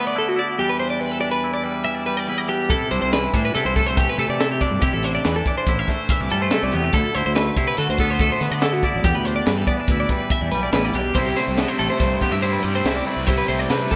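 In a straight 5/4 at 142 BPM, this wistful, intricate math rock and midwest emo excerpt in C major opens with two guitars alone. A twangy, compressed electric guitar picks the accompaniment while an up-front twelve-string electric guitar spins bright, clean arpeggios bathed in spring reverb. At 2.7 seconds a fuzz-soaked fingered bass with punchy overdrive arrives alongside a crisp fusion drum kit, whose high-tuned snare, punchy kick and hi-hat sit up front in a pumping small-room sound. The harmony moves through colourful extended chords such as D69, Em7, C69 and D13. Near 11.1 seconds a cranked, double-tracked stack guitar joins with an overdriven riff as the music shifts into a new section. The band sounds as if playing live in a stone room with moderate reverb, and the top end is rolled off above 11 kHz.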